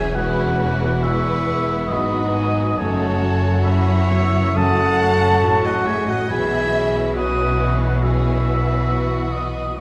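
A mellow, distant oboe sings a second line high above this moving, uplifting cinematic passage, which drifts at 69 BPM in a rubato 4/4 through Eadd9, F#m7 and Bsus4. Beneath it, a distant, focused violin section carries the melody with vibrato. A second, closer and more expressive violin section adds its own counterline. A pure, straight-toned concert flute joins with a tongued second line at 1.0 seconds. An intimate grand piano sits in the background with audible action noise, alongside violas that bring vibrato and portamento. A tight, roomy French horn section holds sustained chords, while soft-attack cellos with a smooth top and a lush double bass section ground the low end. The whole ensemble blooms in a wet recital hall reverb with a 1.7-second decay, and the passage is cut from a longer piece.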